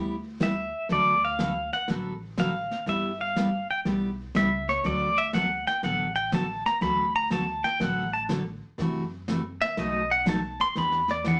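A swung 4/4 groove at 122 BPM sets a playful, down-home western swing mood in D major, heard here as a short cut from a longer country piece. A full-bodied, picked jumbo acoustic guitar sits up front with fresh-string sparkle, joined by a woody, thumpy pizzicato upright bass underneath from the very start. At 0.4 seconds a vintage brush kit enters, its dark, smooth snare and hi-hat played with brushes in a small-room sound with a rolled-off top. The pedal steel guitar carries the melody as a solo throughout, bright, clean and twangy, played with fingerpicks and slide, compressed and placed up front, with volume swells shaping its high lines. Harmony moves between G6 and D6 before turning through F#m7b5 and B7 to land on Em7 at 10.8 seconds. A wet studio reverb adds a sense of space.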